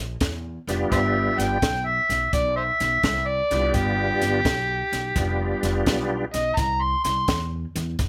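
Light reverb surrounds this laid-back, gritty electric blues shuffle, cut from a longer piece and swinging at 85 BPM in C major. A woody, growly pizzicato upright bass opens at 0.0 s, a dry cocktail drum kit with a high-tuned snare and punchy kick follows, and from 0.7 s a reedy tonewheel organ with key click, chorus vibrato and slow rotary speaker sits up front. An amplified, overdriven harmonica takes the solo from 0.9 s, with scooped notes, tongue slaps and light vibrato in a jazz style, over a rootless C7 moving to G7 and settling on C.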